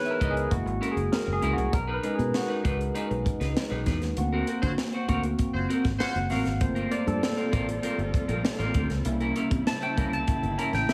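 A barky, lightly overdriven tine electric piano with lush chorus solos up front in this bittersweet, urban slice of polished 1980s jazz-funk pop at 98 BPM, backed by a clean, picked electric guitar riff, a dry, tight funk drum kit with a high-tuned snare and gated reverb, and a punchy, foam-muted fingered bass; a soft-attack jazz horn section adds a brief second line at 4.6 seconds during a band accent, and a lush sul tasto studio string section sustains chords in the background from 6.6 seconds.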